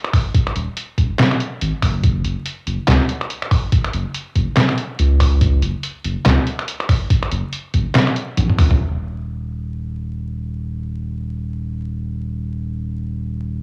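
A saturated sine sub bass, deep and thick with a fast attack and long sustain, sits up front in this meditative, heavy deep dubstep excerpt, carrying on alone after the drums stop at 8.8 seconds. Through the half-time, swung drop, a muffled, pitched-down sampler-style kit of finger snaps, handclaps, hi-hat, a medium-tuned snare and toms plays alongside a thumpy electronic kick, both compressed and re-recorded in a small room, with a drum fill at 8.4 seconds. The sound is dry and lo-fi, like a home cassette recording, with vinyl crackle and small-room ambience.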